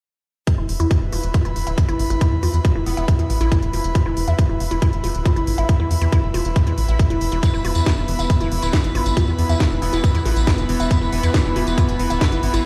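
Intense and alien, this psychedelic trance excerpt drives at 138 BPM in a straight 4/4, centered on E. A tight, tape-warm electronic kick sits up front beside a deep, round analog bass, while a layered garage kit adds a cracking snare and crisp hi-hats, both re-recorded in a large room. A woody, wave-folded pluck carries the riff with a dark, evolving filter sweep, chorus and delay, pumping against the kick alongside a breathy, bright pad with a detuned noise layer. A very quiet metallic wobble bass surfaces briefly around 2.9 seconds and again near 9.8 seconds, its FM tone saturated and aggressive. At 7.4 seconds a pulsing, tempo-synced gated texture of sustained chords arrives with its own reverb, joined by a jingly vintage tambourine, all set in a large studio reverb as if played on a big system in a bare room.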